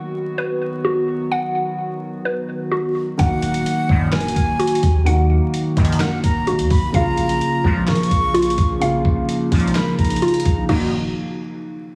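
A half-time trap beat at 128 BPM in Eb minor kicks in at 3.2 seconds, with a gritty, sampler-style drum kit up front, a thumpy kick, fat snare, handclaps, hi-hat and crash, alongside a deep, long 808-style bass, giving this dark, hard-hitting hip hop excerpt its weight. Before the beat lands, a warbling, nostalgic pad sustains chords in the background under a hollow, bouncy square pluck that arpeggios through chorus and tape echo. Once the drums arrive, a dark concert grand piano accompanies, a breathy, unsteady flute carries a second line with tape echo, and from 3.9 seconds a juicy, resonant polysynth adds phaser-tinged stabs, all over a heavily compressed radio sound with vinyl crackle.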